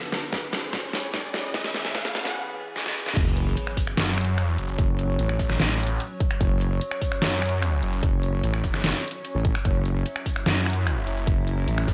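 A snarling distorted saw bass pushes up front from 4.0 seconds in this menacing, chaotic excerpt of heavy wobble dubstep in half-time, its aggressive, growling tone bright, detuned and cut by a moving notch. Just before it, at 3.2 seconds, the drop lands with an impact and a saturated wobble bass, heavy and sawtooth-based with chorus and a mellow core. The build-up opens on an evolving wavetable pad of morphing triangle and sine tones with slow attack, long release, built-in reverb and sidechain pumping, over a background riser and sub drop, drum fills and a brief break. The up-front dubstep kit brings a deep snare, crash cymbal, finger snaps and hi-hat, joined by a punchy, layered electronic kick, both re-recorded in a large room. The harmony moves from C#m to E before settling on F#5 at the drop, and the mix carries light reverb and a high-pass filter.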